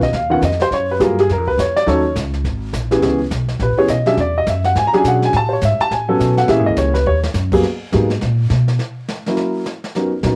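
An up-front, natural-sounding baby grand piano leads this smoky, cool jazz trio excerpt, swinging at 208 BPM in G# minor and soloing until 7.6 seconds over a woody pizzicato upright bass and a quieter, airy brush kit with dark cymbals and a boomy kick; the piano and kit both carry a cassette-tape tinge, a drum fill lands at 7.1 seconds, and an upright bass solo follows, all within a lightly reverberant home cassette recording.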